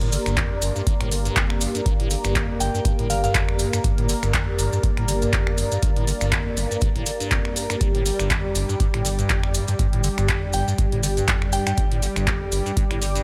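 A sustained Gm7 chord on a detuned, sidechain-pumped analog pad opens this driving, raw acid house excerpt in G minor at 121 BPM with a swung 16th feel, joined at once by a squelchy, resonant acid bass riff through phaser and overdrive, a round, dark analog bass on G1 with tube saturation, an overdriven drum machine of finger snaps, handclaps and hi-hat, and a blurred, evolving granular cloud pad, while grainy maracas and a deep, tape-toned electronic kick from 0.4 s fill out the groove, a crystalline FM bell with tremolo and tape echo flickers in at 2.6 s and again at 10.5 s, and light reverb sits over the mix.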